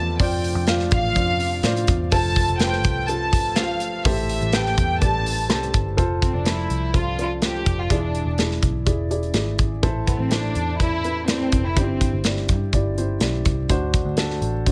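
Set in light reverb and a small room ambience, this driving, earnest piano-driven pop passage, cut from a longer piece, pairs a dark, woody upright piano with audible action noise and long sustain against a round, foam-muted picked electric bass. Up front, a soft-attacked, floating violin section carries the melody until 12.3 seconds, while a very quiet, breathy detuned pad with chorus and phaser hovers beneath only until 6.0 seconds. A punchy, mid-forward studio drum kit with a medium-tuned snare and rolled-off top enters at 0.2 seconds, and the chords move through minor sevenths into a dominant-seventh close.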